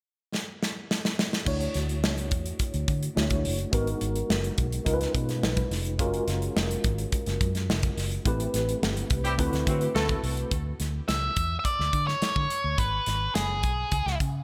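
A straight 4/4 groove at 106 BPM drives this short, upbeat slice of polished 1980s jazz-funk pop, opening with a drum fill from 0.3 seconds on a modern studio kit whose punchy kick, medium-tuned snare, hi-hat and crash sit up front, bathed in gated reverb. At 1.5 seconds a dark, round, foam-muted fingered electric bass enters alongside a worn, slightly out-of-tune tine electric piano, its clean tone shimmering with fast tremolo and ensemble chorus through a combo amp as the harmony moves from Dmaj7 through G#m7, C#9 and F#maj9. A band accent lands at 8.3 seconds over Am7 and D13, and a mellow, distant horn section in tight octave doubling adds a brief pop-style second line with vibrato and digital delay. After the piano drops out, an octave-fuzz lead guitar takes the melody at 11.1 seconds, picked and distorted, over C#m and G#m7 before settling on C#5. The bright digital production wraps the urban mood in a moderate plate reverb.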